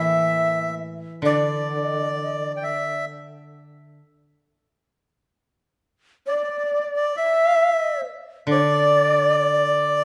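A calm, austere fragment of Japanese chamber music at a rubato 66 BPM features a mellow, airy shakuhachi carrying the melody with vibrato and a chiffy attack, accompanied throughout the 10 seconds by a breathy, nasal melodica on a second line and a dry, woody koto played with fingerpicks underneath, all set in a moderate scoring-stage reverb.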